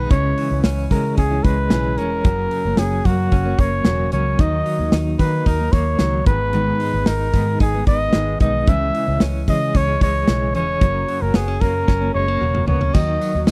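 Dry, close and 1970s-style, this short cut of bittersweet, restless jangly indie pop at 112 BPM in C# dorian puts a mellow, up-front trumpet melody with vibrato and scooped notes over a full-bodied picked acoustic guitar in the background, tremolo-tinged arpeggios from a clean, compressed direct-recorded electric guitar, a dark, round, foam-muted fingered bass, and a punchy, polished drum kit that plays a fill from 11.9 to 12.9 seconds before a jingly tambourine slips in at 13.0 seconds.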